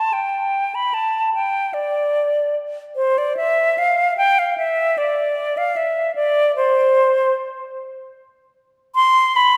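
A wet concert hall reverb surrounds this introspective, flowing baroque-style fantasia in C major at 75 BPM in 3/4, where an airy silver concert flute, up front with a soft attack and vibrato, plays alone in rubato between C5 and C6 through this 9.6-second excerpt cut from a longer piece.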